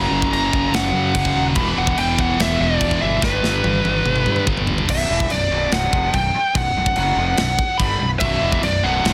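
A straight 4/4 pulse at 144 BPM drives this relentless, dark heavy metal passage in B minor, cut from a longer piece. A dark, up-front high-gain lead guitar carries the melody over two bright, scooped rhythm guitars picking the riff, one sitting in the background. A growly, punchy fingered bass with fuzz and a tight acoustic kit with a medium-tuned snare complete the band, and the drums play a fill from 3.2 seconds. The second rhythm guitar drops out at 4.9 seconds and returns at 8.2, all within a dense, heavily limited modern master with light reverb.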